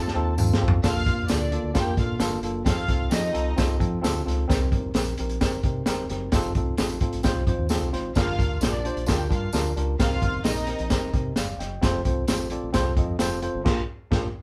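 A moderate room sound holds this band playing live together, with the crunchy, saturated breakbeat kit sitting up front, its dark cymbals, high-tuned snare and punchy kick rolled off at the top and gritty. The piece is uptempo 1960s-style soul at 131 BPM in 4/4 and Bb major, and it feels uplifting and joyful, cut from a longer performance. It opens on a drum fill and a fill from the worn, slightly out-of-tune tine electric piano over F7, then settles into a groove that moves through Bbmaj7, Cm7, Gm7 and F before resolving to Bb6. The fingered electric bass plays throughout, direct and amped with a warm tone, while the jingly, compressed tambourine adds bright sparkle from 0.4 seconds. A dark, woody string section bowed with vibrato lays a lush second line in two short passages, the first ending at 3.8 seconds and the second arriving at 8.2 seconds. The band closes with an accent at 13.7 seconds.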